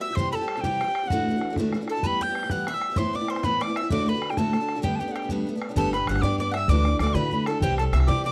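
Celtic folk jig in G major at 129 BPM in 6/8, lively and bright, cut from a longer piece and set in a dry, close 1970s-style studio sound with light reverb. An airy metal whistle carries the melody up front with crisp chiff and vibrato, over a round, double-string mandolin second line, a boxy parlour steel-string guitar picking fresh-stringed accompaniment, and an open, boomy bodhran with a vintage, band-limited tone. At 5.8 s a woody, thumpy upright bass with gut strings joins, plucked and dark, as the harmony moves through G, Dadd9 and C.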